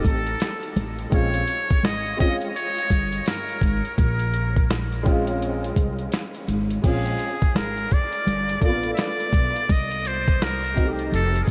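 A buzzy, breathy trumpet with metal mute carries the melody up front through diffuse ambient delay over a smoky, mellow jazz-hop groove at 84 BPM in Bb dorian with swung 16ths, backed by an intimate upright piano with audible action noise and ensemble chorus, a woody pizzicato upright bass, and a gritty, pitched-down boom bap sampler-style drum kit with a thumpy kick, all in a dreamy mix soaked in huge reverb.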